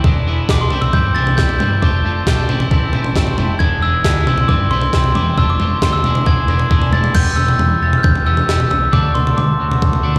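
Indie rock at 135 BPM in a straight 4/4, this restless, moody excerpt is cut from a longer piece and sounds like a live gig heard through a venue's PA, set in the reverb of a recital hall. Up front, a gritty, compressed jungle sampler-style drum kit, pitched up and re-recorded in a large room, hits with a thumpy kick, a high-tuned snare, crash cymbal and toms, while a round, dark picked electric bass sits beneath it. Two guitars play riffs throughout: a biting overdriven guitar with subtle chorus, slapback echo and digital delay, and a twangy, clean electric guitar in the background, dressed in lush chorus and slapback echo. From 0.5 seconds a ringing, bell-like glockenspiel struck with soft plastic mallets carries the melody up front, its metallic tone touched by slapback echo. The harmony cycles through E7, C, F6 and Am before shifting at 7.2 seconds to a new section moving from Em to D.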